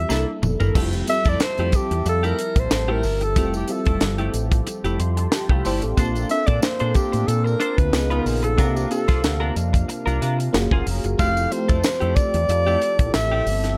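A tight funk drum kit, dry and up front with bright cymbals and a high-tuned snare, opens with a fill at 0.1 s and settles into a lightly swung 16th-note groove at 92 BPM, while a jingly tambourine sits close in the background and an envelope-filtered fingered bass pushes forward. This is polished, upbeat 1980s jazz-funk pop in F major with an urban feel: a clean, compressed semi-hollow guitar picks a chorused riff, a lush FM electric piano with a soft pad layer, phaser and chorus comps and adds a fill at 4.7 s, and a warbling, wave-folded analog pad holds smooth chords in the background from 0.8 s. Over the top, a warm alto saxophone carries the melody in jazz style, with vibrato, subtone and scooped notes, across moving chords such as Bbmaj9, Db9 and Gbmaj9, in a dark, warm studio mix cut from a longer piece.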